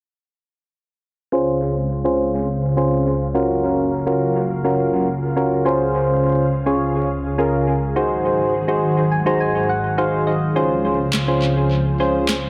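At 1.3 s, soft, round electric-piano-like synth keys with chorus and tape echo enter together with a full-bodied, vintage string machine and cellos holding sawtooth chords with phaser and ensemble chorus, all over a Dbmaj7, Gbmaj7 and Ab7 progression in Db major. This upbeat, euphoric dance-pop fragment at 104 BPM rides a filter sweep throughout, with the mellow keys adding a fill at 8.8 s. Overdriven electronic handclaps and a sharp snare arrive at 11.1 s, all bathed in a wet spring reverb and an echo-heavy mix.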